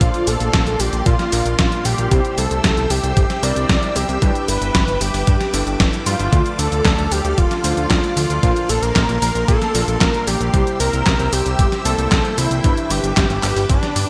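Bright, glossy 1980s-style digital production in a lush hall sets this danceable, bittersweet italo disco excerpt, where a bold, nasal, warbling unison lead with vibrato and digital delay carries the melody up front over a fat, saturated sawtooth bass, a thumpy electronic kick, a detuned 8-bit drum machine with snare, handclaps, hi-hat and cabasa in gated reverb, a chorused string machine sustaining full chords in the background, and clangy vintage electric grand piano stabs beneath chords moving through Bbadd9, C, G6 and Dm.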